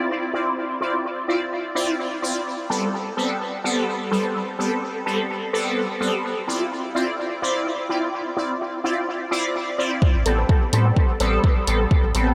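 A huge, cavernous ambient reverb hangs over this nocturnal dub techno fragment in A minor at 127 BPM, cut from a longer piece. A resonant sweep polysynth plays stabs on its own for the first 10.0 seconds, its detuned sawtooth tone juicy and bright, sitting up front with chorus, phaser, sidechain pumping and dub echo while the harmony moves between Dm9 and Am9. At 10.0 seconds a deep, layered electronic kick drum arrives up front, joined by a smooth, dark sine sub bass that pumps with the sidechain. A produced electronic hi-hat follows, its sound softened by low-pass filtering on the hats and on the small room it was re-recorded in. At 10.4 seconds a very quiet, warbling pluck adds a lo-fi, vintage riff with a dusty noise layer and a mellow, decaying tone over the closing Am9.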